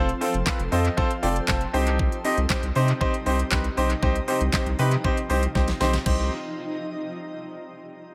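A straight, driving pulse in 4/4 sets up this energetic dance-pop fragment, cut from a longer piece, with a layered electronic pop drum kit up front: knocking kick, fat snare, crisp hi-hats, handclaps and a crash cymbal, all thrown into dub echo. Beneath it, a saturated sub bass with a deep, thick triangle tone and fast attack holds sustained notes, pumping against the kick through sidechain compression. A bright grand piano sits close and intimate in the mix, its brilliant, polished voicing carrying audible action noise as it plays accompaniment and adds a fill starting at 0.5 seconds, while the harmony moves from F to C minor. Far behind, a shimmering ambient pad spreads ethereal sustained chords with a slow attack, octave-up shimmer, granular texture, chorus, built-in reverb and a long release, also breathing with the sidechain pump. A drum fill at 5.6 seconds closes the passage before the parts fall away, leaving a light, echo-heavy mix with a polished produced sheen.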